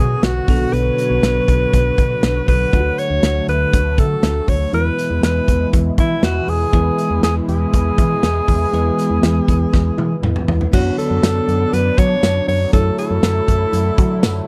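This dramatic, nostalgic 1980s-style pop excerpt opens on a clear, forceful alto saxophone carrying the melody up front, with vibrato, scooped notes and a slapback echo, over a bell-like tine electric piano treated with phaser. Beneath them a lush, detuned unison pad holds sustained chords in the background, thickened with chorus and phaser, while a round, dark FM bass gives punchy, decaying notes. A modern studio drum kit enters at 0.2 seconds, acoustic and pumping, with bright cymbals, a punchy kick, snare, hi-hat, tambourine and toms at a steady 120 BPM in 4/4. The harmony moves from Bm through D to E, and a drum fill from 9.7 seconds leads into a new section at 10.7 seconds built on Bmadd9/F# and F#m7. The mix is dry, with little reverb.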